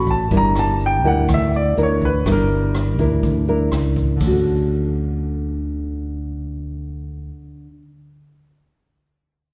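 Bossa nova at 123 BPM in D major, this relaxed, romantic excerpt opens with a clear, intimate baby grand piano carrying the melody for the first 3.0 s, its action noise audible up front. A thumb-plucked classical nylon-string guitar accompanies until 7.8 s, alongside a round, dark fingered electric bass and a brushed jazz kit with a boomy kick, shadowy cymbals, hi-hat and rim clicks that drops out at 4.3 s. The harmony moves from Gm6 to Dmaj7, bathed in a wet concert-hall reverb, with lossy compression artefacts in the sound.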